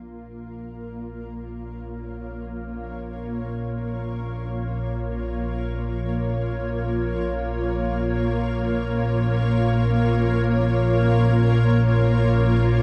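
In free time, this vast, ominous dark ambient drone, cut from a longer piece, rests on a B-flat minor chord. An organ-like drone with ensemble chorus holds the low register from Bb1 to Bb2 under a cloudy, evolving granular pad of sustained chords reaching up to Db5. Both parts fade in across the full 12.8 seconds, their detuned sine tones blurred by a cathedral-like reverb that leaves the top end dark.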